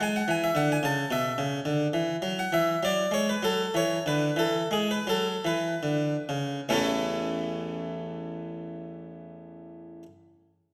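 Classical, baroque-style suite movement for solo harpsichord in A major, tuned to A4 = 445 Hz: a serene, dance-like excerpt in 6/8 that moves with rubato at 45-74 BPM in dotted quarters, slowing from 1.7 to 6.7 seconds before the harmony settles on A. The French-style harpsichord, with a single set of strings, sounds airy, plucked and round, sitting up front as it ranges from A1 to A5. It is set in a wet scoring-stage reverb with a 1.6-second decay.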